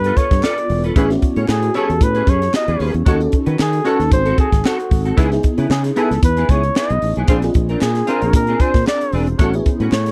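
A breathy flugelhorn with scooped notes and tape echo carries the melody from the start, over a dreamy, warbling FM electric piano with a soft pad layer and chorus, a growly fingered electric bass, and a crisp, up-front fusion drum kit with a punchy kick and high-tuned snare. A twangy, chorused clean electric guitar riff enters at 0.1 seconds and very quiet, hollow group handclaps at 0.4 seconds, while a mellow horn section with octave doubling adds a distant second line from 1.0 to 9.5 seconds over lush jazz chords such as G9, Amaj9 and G#7b9. This breezy, upbeat slice of polished 1980s jazz-funk pop has a lightly swung sixteenth-note feel and a dry, close studio sound.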